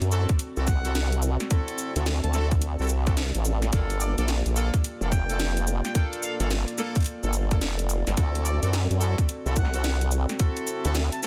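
A dense, heavily limited and nearly dry mix carries this gritty, funky glitch hop excerpt, where an up-front, overdriven electronic kick and a layered kit of cracking snare, bright hats and shaker ride a swung sixteenth feel beneath a detuned sawtooth formant-sweep wobble bass, while loose, clear horn stabs pump against a moody, wave-folded analog pad and a distant, roomy harmonica melody enters at 0.7 seconds in the background over D7, Gm7 and D7 chords.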